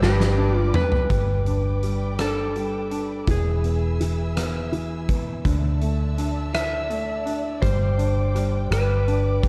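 Tender and heartfelt, this slow six-eight pop ballad at 55 BPM opens with a drum fill in its first 1.1 seconds from a huge arena kit with a fat snare and punchy kick, set up front in a big natural room. An electric slide guitar, dark and slightly broken-up and played with fingerpicks, carries the melody over clear grand piano accompaniment with short sustain, a round, foam-muted vintage fingered bass, and a lush bowed string section with vibrato and portamento. The harmony moves from G to E, Dsus2 and Gsus4 before settling back on G, all wrapped in a warm studio reverb.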